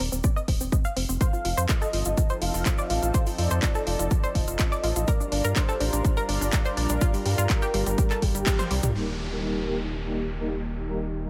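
A punchy, tape-warm electronic kick drives this emotional progressive house excerpt at 124 BPM alongside a deep, round analog bass, bright filtered pluck arpeggios with chorus and digital delay, a grainy egg shaker and a house kit of handclaps, hi-hat and toms, while a dark, expressive synth lead with vibrato and tape echo sits in the background over a lush, airy unison pad from 1.2 seconds, before a drum fill at 8.5 seconds gives way to soft supersaw stabs and a downlifter from 8.9 seconds.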